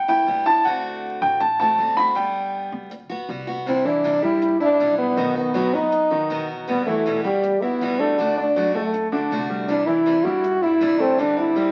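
A warm, classical-style French horn carries the melody up front from 3.7 s in this sunny Latin fragment, after a clear, intimate baby grand piano leads the opening with long-sustaining arpeggios and audible action noise, supported by bright picked parlour steel-string guitar accompaniment and a dark, thumpy pizzicato upright bass in the background, the whole set in wet studio reverb beneath the crackle of a very old 78 rpm record.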